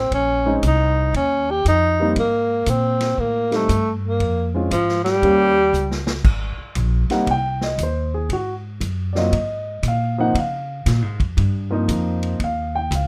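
A light reverb gives this short cut from a longer small-group swing and bop recording an intimate studio-room feel, with the saxophone, bass and piano all sitting up front. At 117 BPM in 4/4 with a swung eighth-note feel in Ab major, the mood is playful and warm. A breathy tenor saxophone carries the melody with a whispered, soft-attack tone, vibrato and scooped notes, then drops out at 6.0 seconds during a short drum fill. The upright bass is plucked with a woody, growly bite on steel strings, while a vintage drum kit with dark cymbals, a punchy kick and a rolled-off top keeps the swing going. A warm grand piano accompanies from 0.5 seconds with a natural sound and audible action noise, and after the saxophone stops it carries the second half over rich chords such as Abmaj9, Dbmaj13 and Eb9, playing with the bass and drums until 13.1 seconds.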